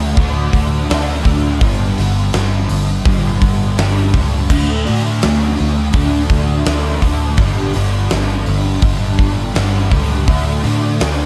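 A double-tracked fuzz guitar leads this hazy, blissful shoegaze and dream pop rock passage, its compressed, distorted riff shifting between D5 and G5 with a shimmering ensemble chorus. Underneath, a foam-muted fingered electric bass adds a round, amped low end, while a huge arena drum kit sits up front with a punchy kick, fat snare, hi-hat and crash cymbal in a big-room sound. The dry, dark production gives this cut from a longer piece a warm weight.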